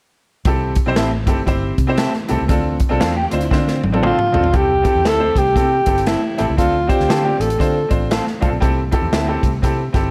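Joyful and warm, this swinging 1960s-style soul excerpt moves between C6 and Dm7 chords. A bright, woody upright piano and a dark, round, muted electric bass carry the accompaniment under an airy, polished big-band drum kit with a punchy kick. Two lo-fi, slightly broken-up electric guitars through a small old amp add fingered stabs from 1.0 seconds and a picked background riff with chorus, a drum fill leads into the second section at 4.5 seconds, and from 4.1 seconds a distant, roomy alto saxophone with vibrato takes the up-front melody, wrapped in plate reverb and tape echo.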